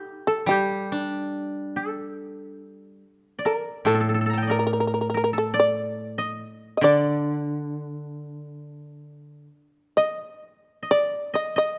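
A buzzing, plectrum-plucked shamisen carries the melody from the first moment, powerful and up front, its fretless tone both percussive and mellow, while a koto played with fingerpicks traces a warm, woody second line that climbs above it. This is austere, calm Japanese chamber music in D miyako bushi, moving in a free, rubato 4/4 at roughly 61-72 BPM. At 0.5 seconds a second koto joins with a low accompaniment, its fingerpicked strings bright and dry and placed close to the listener, before it stops at 9.5 seconds. The shamisen and the upper koto continue together to the end at 11.8 seconds. Close, detailed microphones and a light reverb keep the sound intimate, and the passage is cut from a longer piece.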